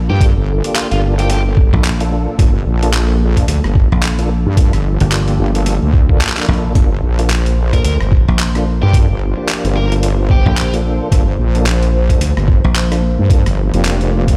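A swung 4/4 groove at 110 BPM drives this glitch hop excerpt in G minor, built on a thumpy, pitched-down electronic kick that sits loudest in the mix alongside a gritty, compressed sampler-style kit of handclaps, hi-hat and rim click. Two basses carry the low end up front: a heavy, saturated wobble bass with a chorused, detuned sawtooth-and-sine tone, and a dry, punchy thumbed slap bass with a bright, foam-muted snap that drops out at 13.2 seconds. A clean tonewheel organ adds stabs coloured by chorus vibrato, a slow rotary speaker, digital delay and sidechain pumping, while a warbling, nostalgic tape-like pad holds sustained chords in the background through chorus, phaser, reverb and its own pumping. A biting, overdriven lead guitar with digital delay cuts in briefly at the start and returns between 7.7 and 10.7 seconds for a picked melodic phrase. The whole passage rests on a single Gm9 chord, and the swaggering, playful mix sounds as if played through a big system in a bare stone room.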